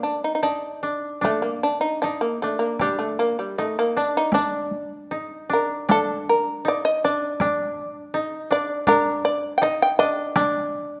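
Calm and austere, this short passage of Japanese chamber music, cut from a longer piece, moves in an unhurried, freely stretched rubato. The shamisen carries the melody from the start, its bright, buzzing, plectrum-plucked tone sitting up front with a percussive, fretless edge. Beside it the koto holds a second line in a narrow compass, its woody, fingerpicked voice dry and close. A taiko ensemble played with heavy sticks joins at 1.2 seconds and drops out at 10.5 seconds, set close and dry beneath the strings. The whole ensemble sits in a moderate recital hall reverb, and the passage turns to a new section at 5.9 seconds.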